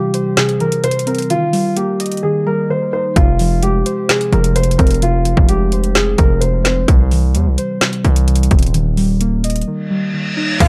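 Eerie and dark, this half-time trap excerpt sets a mellow, delayed grand piano melody over muted, felt-like synth keys with chorus, while an up-front trap kit with a hard-clipped kick, woody snare and metallic hats is joined by a heavy, saturated 808 bass at 3.2 seconds, and a reverse cymbal at 9.9 seconds leads into a brief, edgy sync-sweep polysynth stab at 10.6 seconds, all in a dry, warm mix.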